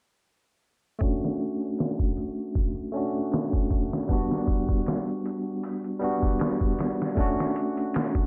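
Trip hop at 78 BPM in a swung 4/4, this melancholic, smoky fragment runs from 1.0 to 8.3 seconds over Dmaj7/A, Gmaj7 and back to Dmaj7/A. A bright, barky tine electric piano sits up front through a combo amp, lightly overdriven with harmonic tremolo and tape echo, as it plays the chords. Beside it, a compressed, pitched-down sampler-style kit brings a gritty, thumpy kick, a medium-tuned snare and filtered hats, all under a low-pass filter sweep, light reverb and digital ambience.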